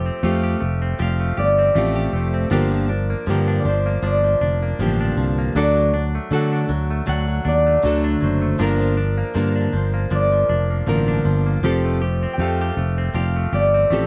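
Set in 4/4 with a gentle swing on the sixteenths, this tender, wistful acoustic pop passage moves at an unhurried pace and is cut from a longer piece. A thumb-plucked concert harp carries the melody in its upper register, its bright, ringing tone floating over a fingerpicked nylon-string guitar whose full-bodied, deep classical sound and fresh strings sit up front, complete with audible finger squeak. A direct-recorded clean electric guitar weaves picked arpeggios further back in the mix, sounding twangy, compressed and scooped. Underneath, a sustaining fretless electric bass with analog chorus gives a growly, punchy, amped foundation that sits prominently in the blend. The harmony cycles through Fadd9, Gm7 and D before returning to Gm7 and Fadd9, and the dry, close sound of the recording keeps each part intimate throughout all 14.1 seconds.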